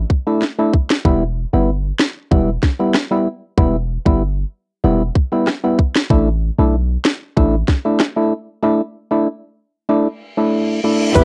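Light reverb and the texture of a home cassette recording give this dancehall excerpt a lo-fi, tough and bouncy character at 95 BPM in a straight 4/4. An electronic island pop drum kit sits up front, with a tight kick, sharp snare, crisp hats and rim clicks, all roughened by overdrive and tape grit. Beneath it, a deep, boomy 808-style bass with a sine core and a mellow decay holds the low end, while a dark, hollow organ stab with chorus punctuates the harmony as it moves from Asus4 to Em and back to Asus4. A reverse cymbal and impact rise from 10.3 seconds. At the 11.2-second mark, a soft, round, wave-folded pluck with chorus lands on a single high note, joined by a warm, bowed studio string section with vibrato and sidechain pumping, plus a bright, distant tube shaker in the background.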